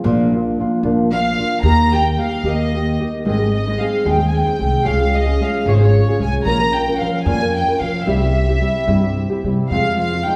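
A festive, romantic mariachi piece in 6/8 at 74 BPM opens with a dark, thumb-plucked nylon-string guitar up front over a woody pizzicato upright bass, moving from Eb major to Ab major at 3.2 s. At 1.1 s a bowed violin section takes the melody, pure and floating, played sul tasto with a soft attack and smooth top, and from 9.7 s a distant, warm solo trombone with light vibrato adds a second line in the background. The recording is wet with a church or concert-hall reverb, and this is a short cut from a longer piece.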